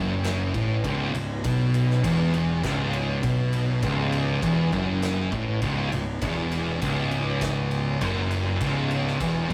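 A rough rehearsal-room recording, colored by tube saturation and light reverb, frames this hypnotic, sludgy stretch of stoner and doom metal cut from a longer piece. At 100 BPM in a straight 4/4, the music sits on a single C# minor chord. Two thick fuzz guitars pick a riff between C#2 and B2 from the very start: one is up front and the other sits in the background, both distorted with a warm edge. Beneath them, a fingered electric bass growls through overdrive and fuzz, bright and direct, playing between C#1 and B1. At 0.2 s an oversized, low-tuned acoustic drum kit joins, with a boomy kick, a fat snare and a dark ride cymbal, all in a big, pumping room that sounds gritty and saturated.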